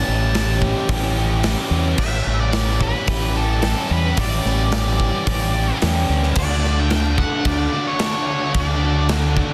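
Shoegaze-tinged dream pop rock at 110 BPM in D major, this blissful, dreamy excerpt pairs a fuzzy octave lead guitar melody soaked in distortion and analog delay with a biting, double-tracked overdriven riff guitar under lush chorus, a dark, round fingered bass up front, and a big-room acoustic kit with bright cymbals and a punchy, softly clipped kick and snare, all in a dense, heavily limited modern master that moves from A7sus4 to D at 6.4 seconds.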